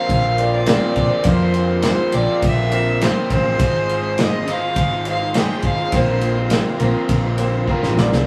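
A biting, earthy fiddle carries the melody up front over a boxy picked swing-style acoustic guitar, a double-tracked overdriven electric guitar riff and soft, flute-like tonewheel organ chords with key click and slow rotary, as a round, dark hollow-body bass, a punchy natural country drum kit and a very quiet, brilliant grand piano join in this open-road, jangly folk-rock and heartland-rock excerpt, with the fiddle dropping out at 6.5 seconds before a drum fill at 7.7 seconds, all in a rough rehearsal-room sound with tube saturation.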